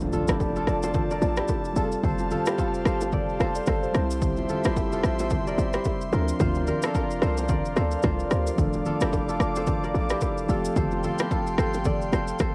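Hypnotic and sultry, this fragment of a swung afrobeats groove at 110 BPM in D minor moves through Dm, Fadd9, C and Bbadd9, with a punchy, overdriven deep house kit of kick, rim click and shaker sitting up front beside a tight, fast-attack 808-style bass. A mellow, clean tine electric piano carries the accompaniment while an airy, breathy pad with chorus holds detuned sustained chords above, and a crisp, ringing fingerpicked kora repeats its riff through analog delay. Bongos and congas add live-room colour in the background, a very quiet electronic impact marks the opening 2.0 seconds, and light reverb and cassette grain give the whole home-recorded take a hazy, intimate feel.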